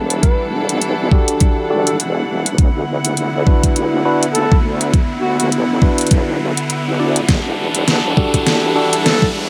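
A swung sixteenth-note glitch hop groove in 4/4 drives this playful, gritty passage from a longer piece, which unfolds as one long build-up. An up-front, knocking electronic kick and a pop drum kit with hi-hat and deep snare, both overdriven and layered with a small-room character, anchor the beat, and a drum fill arrives at 7.3 seconds. Beneath them, a heavy, detuned sawtooth wobble bass with chorus holds the low end, while a dark chamber string section plays soft, sul tasto sustained chords with sidechain pumping. An amplified harmonica carries a jazz-style solo full of tongue slaps and scooped notes, with delay, until 5.5 seconds, then returns briefly near the end. A bright, clean tine electric piano adds pumping, echoing stabs, and both the piano and the harmonica move through filter sweeps. An electronic riser enters at 2.3 seconds as the harmony shifts between Em11 and D69, all set in a light reverb.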